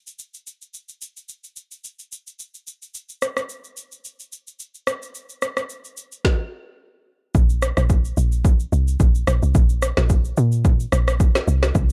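A lightly swung sixteenth-note groove drives this relaxed amapiano excerpt, with a layered electronic deep house kit of punchy kick, woody snare, rim click and shaker sitting up front with the character of a small room. At 7.3 seconds the drop arrives and a percussive FM log drum bass enters, its fast-attack, decaying notes carrying a noisy edge and a dark, woody tone that stays prominent in the mix. The production is dry and dusky overall, keeping the mood easygoing and mellow.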